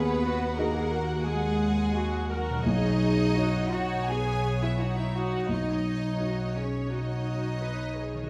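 Uplifting yet tender, this short cinematic passage in B major moves at 85 BPM in 4/4 with a free, rubato feel, cut from a longer piece. A dark, woody violin section carries the melody with vibrato, sounding distant and lush, while a second violin section adds a clear, pure line that seems to float. Beneath them, a felt-muted upright piano gives soft, mellow accompaniment with audible action noise, joined by a viola section played sul tasto with a gentle attack. A ringing concert harp adds very quiet fingerpicked arpeggios. Cello and double bass sections anchor the low end, the cellos intimate and close with light vibrato, and the whole ensemble plays throughout the 8.3 seconds over a D#m chord that moves to Badd9 at 2.7 s, bathed in the wet reverb of a scoring stage.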